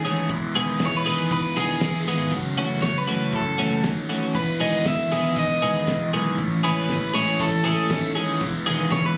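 A crunchy overdriven guitar carries the melody from the very start, up front and touched with slapback echo, while a raw garage guitar churns out a riff through overdrive and phaser beneath it. This is carefree, wistful indie rock in E major at 118 BPM in a straight 4/4, a short cut from a longer piece. A clean, compressed twelve-string electric guitar sits forward with its own riff, shimmering through analog chorus and slapback echo. A growly picked electric bass, bright and direct, anchors the low end, and a cloth-damped, thuddy drum kit keeps time on hi-hat, a fat snare and a tight kick with a dark, rolled-off top. The chords move from Emaj7 to F#m7, back to Emaj7, then Amaj7 and home to Emaj7, all heard as if captured on a phone in the room, with club reverb, light reverb and compression.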